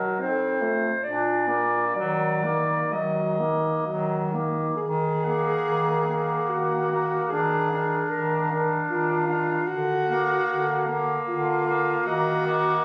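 From the first moment, a clear clarinet sings an elegiac, yearning melody over a mellow alto saxophone second line with vibrato, a warm tenor saxophone accompaniment, also with vibrato, and a soft-attacked bass clarinet on the bass line. This lyrical classical quartet moves in an unhurried three with a flexible rubato feel. A second section begins at 4.8 s, and the harmony later settles back to its home minor chord near 12.1 s. The sound is a phone recording made in a recital hall, with moderate reverb, roomy lower voices, studio ambience and compression, and it is cut from a longer piece.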